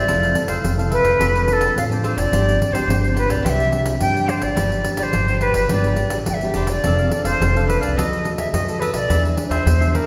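An airy, bright wooden flute carries a tongued, vibrato-laden melody up front over pizzicato upright bass, thumb-plucked nylon-string guitar, crisp picked cavaquinho in the background and a jingly, close and dry pandeiro, giving this playful, festive samba and choro excerpt at 106 BPM a lively, straight feel through chords such as Fmaj7, Gsus4 and E7, set in a wet recital-hall reverb.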